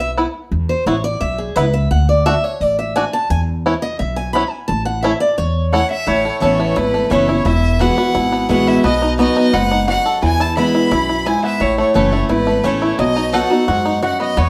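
Boxy, up-front picked parlour guitar opens this lively, virtuosic bluegrass excerpt, taking a solo for the first 6.1 seconds at a brisk 173 BPM in A major with a straight 4/4 feel. Beneath it, a woody, thumpy pizzicato upright bass sits close, while a twangy, percussive banjo played with fingerpicks enters at 0.2 seconds with arpeggios. At 5.7 seconds a clear, biting fiddle takes the melody with light vibrato and intense bowing, joined by a mellow, nasal lap resonator guitar played slide with fingerpicks, its metallic second line kept in the background. The harmony moves from E5, D and A chords through Aadd9 and Eadd9 to B, E and A, ending the passage on B. A reverberant studio room places the ensemble a little further back, giving the fast picking a sense of space.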